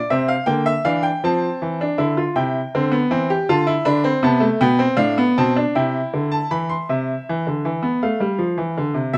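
Classical, baroque-style three-part fugue in 6/8 with a straight, joyful and lively feel, taken from a longer piece and played on a solo baby grand piano from 0.0 to 9.2 seconds. The piano sounds bright, brilliant and open, with short sustain, sitting up front under close, detailed microphones, and it ranges from A2 to C6. A moderate large-studio reverb gives the room some air as the harmony moves through C7, F, C, Dm and G7 before the music turns to a new section at 6.9 seconds.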